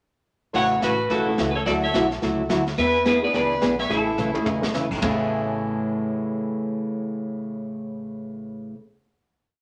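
A wet studio sound with a small-room feel frames this cheerful western swing piece in A major at 214 BPM, swung on the eighths. An up-front, clean lap steel played with fingerpicks and slide carries a motif-based melody partly doubled in thirds, while a distant, earthy fiddle adds a bowed harmony line with light vibrato, mostly in thirds. A picked archtop guitar with audible finger squeak keeps a four-to-the-bar rhythm, a woody upright piano comps with syncopation in the background, a thumpy pizzicato upright bass plays two-beat root and fifth with walk-ups, and a brushed vintage drum kit with dark cymbals sweeps the snare and plays a fill before stopping at 5.1 seconds, leaving guitar, piano and bass to hold the final chord.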